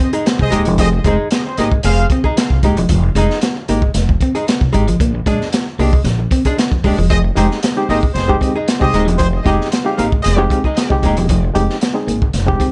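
Sly and driving, this funk excerpt in F dorian at 114 BPM rides a crunchy, gritty breakbeat kit and a woody, thumpy pizzicato upright bass under a slightly broken-up electric guitar riff with spring reverb, a dark hollow-body archtop guitar accompaniment, and a smooth horn section with tape echo playing a second line. The harmony moves from Fm9 to Bb13 and back to Fm9, and barky, reedy electric piano stabs with overdrive and fast tremolo enter at 7.4 seconds over that returning Fm9.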